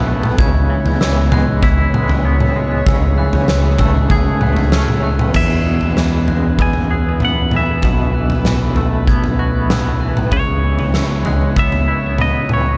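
A straight 4/4 pulse at 96 BPM drives this soaring, hopeful post-rock excerpt in E major: a huge arena drum kit with a punchy kick, fat snare and bright cymbals sits up front from 0.2 s over a growling, overdriven fingered bass, while a clean picked electric guitar plays arpeggios through tremolo and digital delay, a bell-like glockenspiel struck with soft plastic mallets rings airily in the background, and a bowed string section holds floating sul tasto chords beneath, until at 5.4 s a second, compressed, twangy guitar carries the delayed melody as the harmony moves from C#m7 toward E and B7sus4 in a dark, roomy mix.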